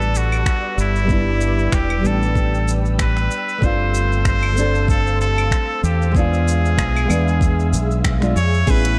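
Warm, smooth sunset chillout at 95 BPM with a gentle 16th-note swing, where a nasal, breathy trumpet with straight mute sings the melody over fingerpicked nylon-string guitar, both carrying delay, while a silky, phased string machine holds chords in the background, a round, punchy dub fingered bass sits up front, a smooth R&B kit of claves, crash, finger snaps, hi-hat and shaker plays from the start and is joined by a knocking electronic kick from 0.5 seconds, a very quiet airy wind-like noise texture drifts in at 0.2 seconds, and a twangy clean electric guitar flickers briefly at 8.7 seconds, all in a dark production with light reverb over A9sus4, G9sus4 and E7b9 chords.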